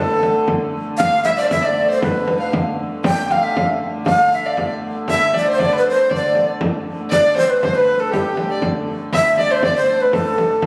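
Medieval dance at 118 BPM in 2/4, mysterious and driving, in which a breathy, bright shakuhachi leads up front with vibrato and a crisp, chiffy attack. A nasal, earthy fiddle traces a close second line while a dark, reedy, boxy hurdy-gurdy holds the drone, and a frame drum played with soft hands enters at 0.2 s, all set in a wet, roomy reverb captured on a phone in a club-like space in this short cut from a longer piece.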